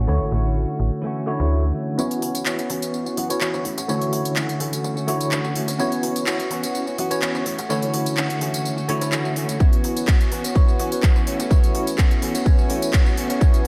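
Lightly reverberant and pumping under sidechain, this sunny, joyful filtered disco house excerpt at 126 BPM in D major opens with a bright, clean, compressed direct-recorded electric guitar riff through analog chorus, a snappy, metallic FM slap bass sitting mellow in the background with tube saturation, and an up-front, bell-like, barky tine electric piano through a phaser, all alternating between Dmaj9 and F#7sus4, before a house drum kit of crisp hats, handclaps and tambourine arrives at 2.0 seconds to start a build-up with a filter sweep, and a punchy, layered electronic kick drum lands up front at 9.6 seconds.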